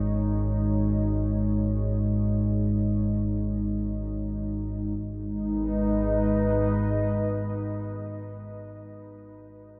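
Unsettling and dark, this fragment of a longer dark ambient drone piece unfolds in a vast, echoing space soaked in huge reverb. Up front, an ominous, rumbling drone of triangle and sawtooth tones with lush chorus and built-in reverb sits beneath a moody, detuned analog pad whose slow-attack chords carry a sub octave, moving from G#5 to G#m at 5.0 s. A metallic bronze singing bowl, played with a suede striker, rings barely audible with slow beating until it stops at 5.0 s.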